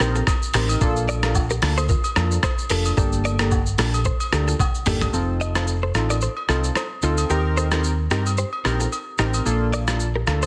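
A lightly swung 4/4 groove at 111 BPM drives this sunny, romantic afrobeats excerpt in F mixolydian, with a gritty, pitched-down boom bap sampler-style drum kit up front: a thumpy kick, hi-hat, rim click, shaker and toms, plus a snare with soft clipping. A round, punchy hollow-body short-scale electric bass sits up front too, dark and amped in the low register. Analog keys with pulse and sawtooth tones, a filter sweep and chorus carry the accompaniment through Eb6, Bbmaj7, Gmadd9 and F7 chords, while a bright, clean, direct-recorded electric guitar plays a riff colored by harmonic tremolo and tape echo. Agogo bells and woodblock join in the background from 0.3 seconds. A drum fill at 4.6 seconds leads into the second section at 5.1 seconds, where the kick drops out, all set in digital ambience with a dense, heavily limited modern master.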